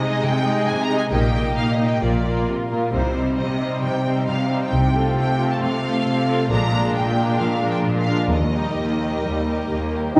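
A straight 4/4 pulse at 134 BPM carries this short cut from a heroic adventure film score in Eb major, with an adventurous, triumphant mood. A lush violin section sings the melody with rich, focused vibrato, while a second violin section traces a close, expressive second line with portamento, and a clear viola section bows accompaniment in the background. A concert harp rings out fingerpicked arpeggios beneath them, and a smooth-topped cello section anchors the bass, joined at 1.1 s by a rich, expressive double bass section. The harmony moves from Ab/C through Cm, F/C and Bb7 before settling on Eb, where a pure, soft-attacked flute and a solo clarinet in classical style sound together at 10.2 s. A generous recital hall reverb, lasting about 1.6 seconds, gives the ensemble a spacious, cinematic glow.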